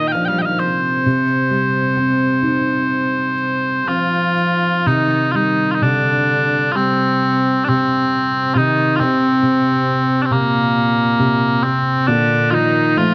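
The rhythm floats freely in an unhurried, rubato 4/4, giving this short cut from a longer Celtic slow air a mournful, longing character. Mellow small bagpipes carry the melody up front, their sweet, continuous tone holding the line over the full span. Beneath them a single bowed cello plays a second line with a pure, floating sound that seems to sit at a distance. A felt-muted upright piano supplies soft, dark, intimate accompaniment, its thick-felt hammers lending a natural, hushed quality. The harmony opens on Bb and settles into Cm, shifts to a bare C5 at 4.9 seconds as a new section begins, drops its chords altogether at 8.6 seconds, and comes to rest on Bbmaj7 at 12.1 seconds. Close, detailed microphones and light reverb keep the small ensemble clear and near.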